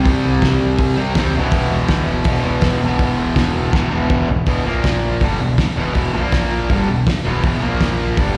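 A distorted, double-tracked fuzz guitar leads this raw, rowdy garage rock clip, pushing a riff up front from the opening second to 8.4 seconds at a driving 163 BPM in straight 4/4. Beneath it, a bright, punchy picked electric bass with overdrive and fuzz holds down the low end, and a cloth-damped, thuddy drum kit of hi-hat, kick, snare and toms sits close, with a fat snare, tight kick and a muffled, gritty, rolled-off top. The harmony moves from C5 to E5 in the first half, then alternates between A#5 and E5 once the second section arrives at 4.5 seconds, just after a drum fill from 3.7 seconds. The whole band sounds like a live gig heard through the venue's PA, with light reverb and the tail of a recital hall around the lo-fi, small-room drums. It is a short cut lifted from a longer piece.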